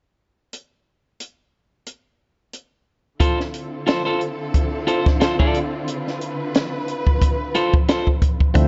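A compact cocktail drum kit opens this sly funk clip at 0.5 seconds, dry and up front, with a high-tuned snare, punchy kick and hi-hat setting a 90 BPM groove in 4/4 with a light swing on the sixteenths. At 3.2 seconds, over a Dm7 in D dorian, an electric guitar at the edge of break-up joins with compressed, picked accompaniment, sitting up front, while a studio string section lays warm bowed chords beneath, expressive with vibrato and portamento. Only in the final instant do the rest arrive: at 8.5 seconds, thick tonewheel organ stabs with overdrive, key click and a slow rotary speaker, followed at 8.6 seconds by a scooped, clean electric guitar riff through a phaser, a round, foam-muted vintage fingered bass, and very quiet, ringing, high-tuned congas. The production is dark and warm, with a small room ambience and light reverb, and the clip is cut from a longer piece.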